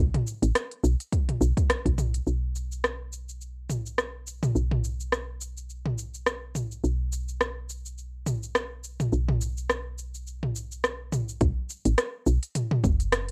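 A lightly swung 16th-note groove at 105 BPM in 4/4 drives this earthy organic downtempo excerpt, where an up-front deep house drum kit of cabasa, smooth hi-hat, rim click and toms, coloured by cassette tape and studio reverb, sits beside a woody, round FM bass with a fast attack that decays and tube saturation, while a deep, layered electronic kick drum enters at 1.1 seconds and again at 11.4 seconds, all within the light reverb of a home cassette recording.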